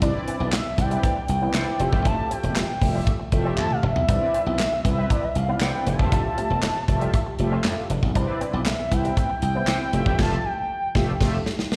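Early-eighties boogie funk with a smooth, danceable feel, this short cut from a longer piece rides a straight groove while Cmaj9 and Fmaj9 alternate beneath it. An up-front slap bass, bright and punchy, pairs with a modern studio drum kit whose bright cymbals, medium-tuned snare and punchy kick drive the music, with fills at 3.6 seconds and again from 10.2 seconds, where the band lands a closing accent. Mellow synth brass supplies brassy, round chords with chorus and slapback echo, while an electric guitar through an envelope filter plays a twangy, clean riff in the background until 10.0 seconds. From 0.5 seconds a gliding portamento lead carries the melody high up, its soft attack and vibrato coloured by chorus, slapback and tape echo, and a group handclap snaps along behind it. The whole band is heard through a venue's PA with the light reverb of a recital hall.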